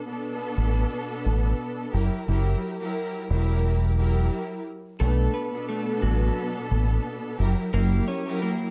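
Boom-bap hip-hop at 88 BPM in B minor with a gentle 16th-note swing, this reflective, gritty short cut sits in a dark production with vinyl crackle and light reverb, moving between Bm7 and F#7b9. A lush, bowed string section with vibrato and a smooth top opens at 0.0 s, filtered and up front, and a round, direct dub-style fingered electric bass joins at 0.6 s, sitting deep and prominent. At 5.0 s a picked, compressed electric guitar, slightly broken-up and filtered with a slapback echo, takes the melody over the strings.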